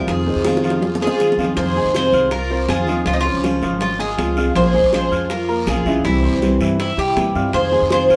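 Warm and nostalgic, this short cut from a longer Cuban son and guajira piece moves in a straight four. The metallic, double-strung Cuban tres carries the melody up front, picked, with some octave-doubled strings. An intimate chamber violin section plays a soft-attack, sul tasto second line with light vibrato, while a bright, thumb-plucked nylon-string guitar supplies accompaniment and a natural-sounding grand piano spreads arpeggios. A woody, thumpy pizzicato upright bass with gut strings anchors the low end, and tight, high-tuned bongos played with hard hands sit close and dry in the background beside a raspy, vintage, band-limited guiro. A drum fill runs from 0.5 to 1.6 s before the next section begins, the harmony moves from Fm7 through Dbmaj7, Bbm7 and C back to Fm7, and the band plays live in one room under a wet studio reverb.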